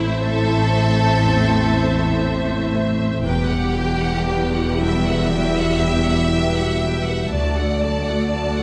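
Longing and moving, this short excerpt from a cinematic orchestral film score unfolds at a slow 60 BPM in E minor, its 4/4 pulse loosened by a rubato feel. A lush violin section carries the melody high between E5 and A5 with rich, close vibrato, while a second violin line beneath it adds a warm, even glow. Violas and cellos sit in the background with a lush, bowed tone, the cellos soft in attack and expressive, and a distant double bass section anchors the deep register alongside the cellos. A French horn section holds tight, classical-style chords behind the strings, and a concert grand piano plays intimate accompaniment in the background, its vintage tone carrying audible action noise and deep bass. The chords move from Am to Emadd9 at 3.2 seconds and settle on D at 7.3 seconds, all framed by a moderate scoring stage reverb that lends the ensemble a gentle, spacious bloom.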